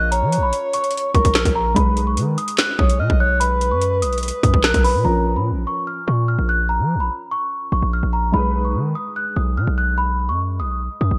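Lightly reverberant and bright, with a 1980s-style digital sheen, this menacing, ominous excerpt of half-time drill sets a delicate, bell-like celesta melody up front, its soft felt-hammer tone vintage and band-limited and trailed by delay. Beneath it a soft, breathy flute-like synth lead carries a second line with chorus, delay and vibrato, then drops away at 5.0 seconds. A dark, boxy grand piano with short sustain supplies mellow accompaniment through an ensemble chorus, while a punchy, heavy 808-style bass with a fast attack and decaying sine tone anchors the low end throughout. The electronic drill kit hits hard and close until 4.9 seconds, its clipped kick, woody snare, metallic hats, rim clicks and handclaps roughened by overdrive, 12-bit sampler grit and gated reverb. The harmony moves between Bbm and B6, leaving the celesta, piano and bass in a sparser second half after the drums fall out.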